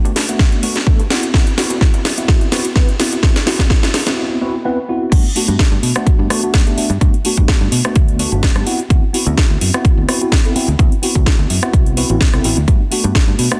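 Filtered disco house at 127 BPM in G major, funky and feel-good with a lightly swung 16th feel, cut from a longer piece. A mellow tine electric piano, treated with phaser, a low-pass filter and sidechain pumping, carries Gmaj9 and D13 chords. Beneath it sit a punchy, foam-muted fingered electric bass with tube saturation and a tape-toned house kit with a cracking snare and metallic, pumping hats that plays a drum fill through the build-up. An up-front electronic kick anchors the groove from 0.4 seconds onward. After a short break at 4.2 seconds, the drop arrives at 5.1 seconds, all set in light reverb within a dense, heavily limited master.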